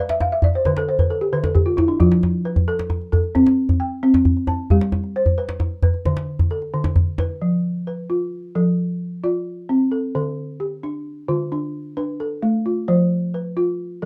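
West African traditional music in 12/8 at 88 BPM (counted in dotted quarters), this hypnotic, joyful excerpt in F lydian centers on a balafon playing woody, round arpeggios with soft rubber mallets, opening with a fill that runs to 2.0 seconds. A close, medium-tuned djembe sits up front beside it and drops out at 7.3 seconds, just before a second section begins at 7.4 seconds. The chords move from G through F, C and D to F, Dm and F, all in a dark production with a modest small-room reverb.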